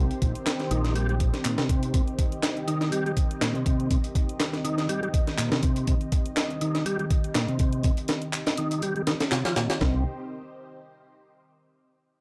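Set in a light reverb, this energetic, swaggering breakbeat excerpt, cut from a longer piece, rides a swung 122 BPM groove in C minor pentatonic over a single C minor chord. A compressed, sampler-style breakbeat kit sits up front, its gritty, pitched-up sound built on a thumpy kick, a high-tuned snare and hi-hat with a tape-warm edge, while a quieter electronic garage kit layers handclaps and warm hats underneath. A smooth, clean tonewheel organ carries the riff up front, colored by chorus vibrato, fast rotary speaker, overdrive, a low-pass filter and dub echo, and a filter sweep runs across it through the first 9.8 seconds. Behind it, a lush, thick unison pad of detuned sawtooth and square waves with a sub octave holds sustained chords, its slow attack and long release shaded by chorus and phaser, pumping to the sidechain and sweeping through the same filter movement with a bright sheen. 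A fingered electric bass with an envelope filter and tube saturation sits direct and amped up front, playing only until 1.3 seconds and returning at 9.8 seconds as the brief closing section begins.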